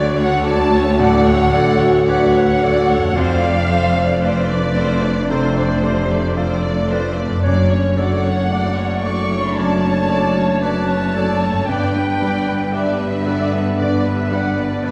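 A clear, smooth violin section carries the tender melody through this slow, rubato orchestral film-score excerpt in D major at 56 BPM, with a second violin section adding portamento, a large airy flute ensemble and, from 1.0 s, a solo clarinet shaping second lines behind it. A bright grand piano and a very quiet viola section fill out the accompaniment alongside a very quiet, ringing harp playing fingerpicked arpeggios, while a mellow French horn section holds sustained chords over close, focused cello and double bass sections moving through Dmaj7, F6, Dmaj7/F# and G. Heard from further back in a scoring stage with a wet reverb, the mood is uplifting and emotional throughout its 14.9 seconds.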